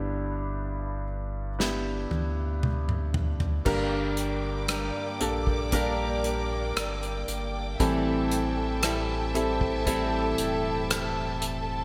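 A slow, straight 4/4 pulse carries this emotional, heartfelt pop ballad excerpt, which opens on a clear, present grand piano touched with subtle chorus and a deep, sine-and-triangle sub bass doubled at the octave. At 1.6 seconds a small-room acoustic drum kit arrives with a fill played on bundle sticks, its punchy kick, medium-tuned snare, rim clicks, toms, hi-hat and crash sitting up front under a gated reverb. At 3.7 seconds the harmony shifts from G6 to Gm, and a lush studio string section enters with smooth, vibrato-rich sustained chords alongside a woody, full-bodied jumbo steel-string guitar fingerpicking delayed arpeggios on old strings. The progression then moves to Am7 beneath the polished piano and bowed ensemble. A moderate plate reverb and a bright 1980s-style digital production give the whole a glossy, spacious sheen.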